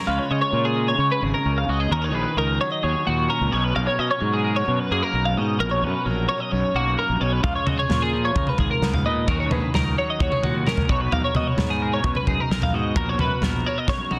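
Bright and wistful, this math rock and midwest emo excerpt opens with a clean twelve-string electric guitar spinning up-front arpeggios through chorus, slapback echo and plate reverb, beside a twangy, scooped electric guitar accompaniment and a growly, fuzz-overdriven fingered bass. The chords move from C#7 through D#m7 to Bmaj7sus2, and at 7.4 s a loose indie drum kit enters with a tight kick, medium-tuned snare and toms, its top rolled off and its sound set in a small room. A drum fill closes the passage at 13.9 s, all inside a dense, heavily limited modern master.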